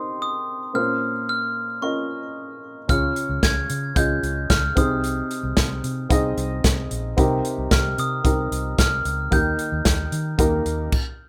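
Lightly reverberant and rough like a home demo, this hopeful, anthemic piano-driven pop clip opens with a dark, woody upright piano and a bell-like glockenspiel carrying the high melody, its brass mallets giving a smooth, ringing shimmer. At 2.9 seconds a round, foam-muted vintage electric bass and an airy, polished country drum kit join, with a punchy kick, a medium-tuned snare, hi-hat and crash cymbal sitting up front.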